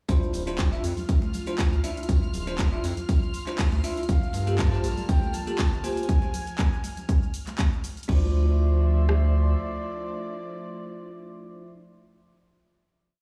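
A four-on-the-floor kick with rim clicks drives this hypnotic, late-night deep house piece at 120 BPM in D minor, where overdriven claps, bright hats, shaker, crash, a very quiet dry breakbeat and syncopated congas support a round, saturated analog bass riff, bell-like electric piano stabs with tape echo, sidechain-pumped airy and detuned pads, a silky string machine holding one high note, and a breathy flute-like lead that joins at 4.1 seconds with hook phrases before the piece resolves on a final Dm9 chord at 8.1 seconds in a stony, reverberant room.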